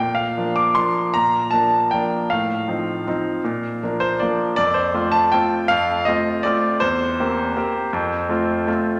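Nostalgic and bittersweet, this brief classical piano waltz unfolds in a lilting triple metre, its beats uneven and its pulse stretched and relaxed with rubato. A solo concert grand carries the whole piece, ranging from a deep bass low in the instrument up into a clear, polished treble. The piano sits up front and present, with an intimate closeness that lets the audible noise of its action come through, while each note rings with long sustain. A wet scoring-stage reverb with a 2.0-second decay surrounds the instrument, lending the sound a spacious bloom. The harmony moves between tonic and dominant colours before arriving on an F chord at the close at 9.0 seconds, where the fragment breaks off as part of a longer work.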